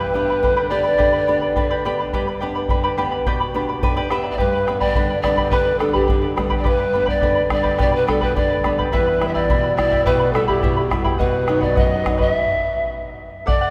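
Set in a straight 2/4 at 106 BPM, this excerpt of Andean folk moves with an earthy, festive spirit, cut from a longer piece and carried by a deep, dark bombo that sounds close and dry from 0.4 seconds on. Up front, the polished pan flute takes the melody between G4 and E5, its airy, wooden tone shaded with vibrato and the chiff of tongued notes; it sounds briefly at the start, then returns at 4.3 seconds for the rest of the passage. Beside it, the fingerpicked charango shimmers on its double strings, some doubled at the octave, ranging from E4 to B5. A small, fingerpicked nylon-string guitar fills in below, with audible finger squeak, adding a fill just before the second section and dropping out at 12.3 seconds as the harmony moves from G through Em to B before a closing stop. A wet church reverb with a long 3.9-second tail gives the ensemble the spacious resonance of a church or concert hall.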